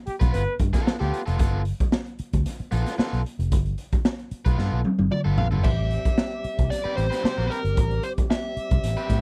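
This dry, close-sounding funk excerpt has an energetic, playful feel, with a gritty garage drum kit and a dark, foam-muted fingered bass both sitting up front from the opening. The drums carry a boomy kick, a medium-tuned snare and a pumping small-room character, while an overdriven semi-hollow guitar adds hollow-bodied, picked accompaniment over a G9 chord. A bright trombone with light vibrato and a soft attack plays a brief second line at the very start, stopping at 1.2 s. During a drum fill, a nasal lead guitar with a parked wah takes the melody at 5.1 s. At 5.6 s the harmony moves to Am9 as a fat, percussive tonewheel organ enters with sustained chords, key click, chorus vibrato and a slow rotary speaker.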